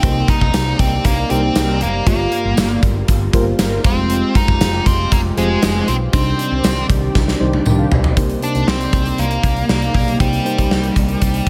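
A gated 1980s-style pop drum kit, bright and up front, opens this nostalgic, moody cut together with a nasal, overdriven lead guitar with a parked wah carrying the melody, a dark FM electric piano through a phaser, a smooth analog pad with chorus holding chords in the background, and a growly, round fretless bass. A very quiet, jingly tambourine joins soon after, and mellow, detuned synth brass stabs with chorus sit behind the band from 1.3 to 7.9 seconds. A drum fill leads into a new section at 8.2 seconds, where the harmony comes back to Cm7, all in a dry sound.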